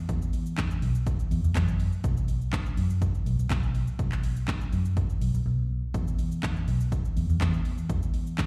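Bittersweet yet energetic, this dance-pop excerpt moves at 123 BPM in a straight 4/4, with a dark, round, foam-muted vintage fingered electric bass pumping under sidechain beside an up-front, tape-warm house drum kit of punchy kick and snare, warm hi-hat, shaker and handclaps that drops out briefly from 5.5 to 5.9 seconds, all heard as a live gig through the venue's PA.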